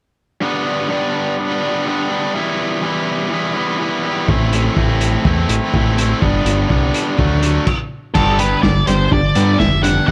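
Upbeat and carefree, this indie rock fragment at 124 BPM in G major opens with a bright, picked overdriven electric guitar riff, joined at 4.3 s by a growling fingered bass and a muffled, lo-fi vintage drum kit with a punchy kick. After a brief stop the band returns at 8.1 s with a dark octave-fuzz lead guitar up front, followed at 8.4 s by a crunchy, chorused guitar riff beneath it, all steeped in studio reverb and the worn, warbly pitch drift of old cassette tape.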